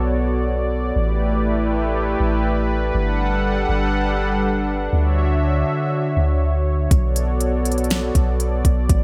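The rhythm sits in a half-time feel at 121 BPM in 4/4, and the drums hold off until 6.9 s, when a smooth R&B kit arrives with a soft kick, a fat snare and silky hi-hats placed up front. This is atmospheric cloud-rap in B minor, a spacious, melancholic hip hop fragment cut from a longer piece and tuned to A4 = 439 Hz. From the start, a warm analog pad of detuned sawtooth tones holds sustained chords with a slow attack and long release, thickened by chorus and breathing with sidechain pumping. Beneath it, a deep, round 808-style bass with a sine-like tone strikes quickly and decays into a dark low end. The harmony moves from Bm7 through A7sus4, Gmaj7 and Dmaj7 before returning to Bm7. A lush hall reverb and bright 1980s-style digital production give the whole an airy, glossy sheen.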